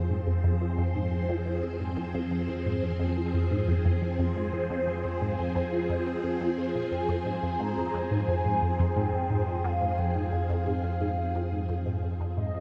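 Bathed in a huge, wet reverb with a 7.9-second tail, this short excerpt of ambient, sequencer-driven space music sounds as if it drifts through a vast, echoing space, hypnotic and cosmic in mood. At 88 BPM in a straight 4/4 and set in F minor, it rests on a single F minor chord throughout. A juicy, squelchy resonant blip pluck repeats its riff from F2 to C4, its ring-modulated, detuned tone colored by phaser, ensemble chorus and delay, while a swirling, vintage string machine holds bright, up-front sustained chords through chorus and phaser. Beneath them a round analog bass sits deep and dark on F2. At 6.9 seconds an expressive portamento lead enters high, between Eb5 and Bb5, its smooth, warbling, wave-folded voice carrying vibrato, chorus and delay, before the whole passage fades out from 10.6 seconds.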